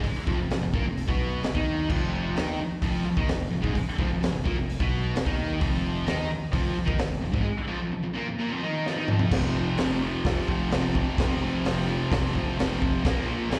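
A straight, driving 4/4 beat from a raw garage drum kit, with its high-tuned snare, boomy kick, crash, hi-hat and toms, gritty and saturated in a pumping small room, pushes this swaggering, rowdy garage rock excerpt, and a drum fill at 8.9 seconds kicks it into a new section at 9.3 seconds. Up front, a thick, bright, double-tracked fuzz guitar riff with distortion and slapback echo rides over a dark, round fuzz bass with overdrive. The sound is of a live gig heard through the venue's PA, carrying a recital-hall reverb.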